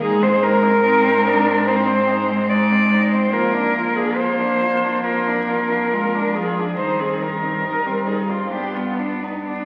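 Heard through the crackle of a very old 78 rpm record and the wet reverb of a recital hall, this solemn, yearning fragment from a longer classical piece for cello ensemble unfolds in a rubato 4/4. A dark, up-front cello carries the melody with vibrato and a soft sul tasto attack, while a clear, nasal, floating cello sings a pure second line beneath it. A third cello, played with light vibrato, supplies intimate accompaniment, and a fourth, with an airy bow and smooth top, anchors the bass throughout.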